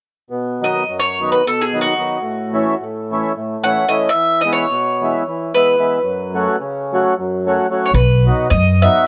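In free time and B mixolydian, this short, virtuosic and wild cut from a longer Balkan wedding-band folk piece sets a picked, double-strung bowl-back mandolin melody up front over a reedy, airy accordion moving through B, A, E and F#m. At 7.9 s a woody, thumpy pizzicato upright bass joins as the harmony returns to B. The sound is dry and close, like a 1970s studio with a small room around it.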